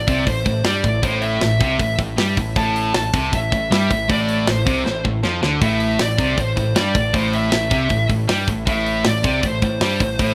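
A warm, distorted lead guitar with digital delay carries the melody up front from the first moment of this heavy, aggressive heavy metal excerpt in A minor at 157 BPM, over a bright high-gain rhythm guitar in the background, two sludgy overdriven guitars (one dark and set back, the other bright and double-tracked) and a growling overdriven picked bass, while an up-front acoustic drum kit with a medium-tuned snare, tight kick and hi-hat joins at 0.1 seconds and plays a fill from 4.9 to 5.6 seconds, all in a rough home-demo mix with light reverb.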